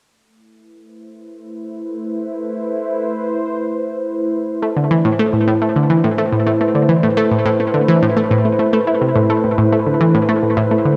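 Ambient, sequencer-driven space music at 106 BPM in A minor, expansive and mysterious, cut from a longer piece. An airy, evolving sawtooth pad with a breathy noise layer and chorus holds sustained chords on A minor from the start, its resonant filter sweeping until 9.2 seconds. At 4.6 seconds a round, detuned analog pluck enters up front with a riff, its chorus and tape echo carried into a wet concert-hall reverb with a cassette-tape grain.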